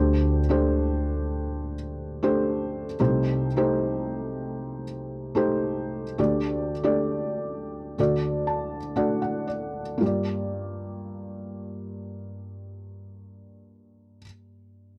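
The rhythm moves in a straight, steady four before it slows down from 3.0 seconds, giving this folk fragment, cut from a longer piece, an intimate, heartbroken air. A felt-muted upright piano carries the melody, its thick felt giving a soft, mellow tone that sits up front, with the audible action noise of the keys close to the ear. At the opening, a hollow-body short-scale electric bass, played with the fingers, plays a single low note, its amped sound dark and round, before it stops at 3.0 seconds and the piano carries on by itself. Suspended and half-diminished harmonies lead toward a plain major chord, and a short felt piano fill from 8.0 seconds carries the music into a new section that settles on a minor seventh. The room is dry and close, with little reverb, keeping the whole mood hushed and personal.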